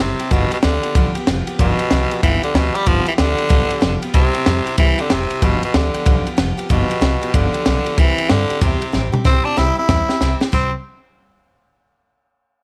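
Rockabilly at a swinging 188 BPM in C major, rollicking and rowdy, with a raspy, gritty tenor saxophone up front carrying the melody over a bright picked steel-string acoustic guitar in the background, a woody, thumpy pizzicato upright bass, and a dry compact cocktail drum kit with a punchy kick, high-tuned snare and dark cymbals that enters at 0.2 seconds and throws in fills from 8.9 seconds as the G7 and C chords alternate in this short cut from a longer piece.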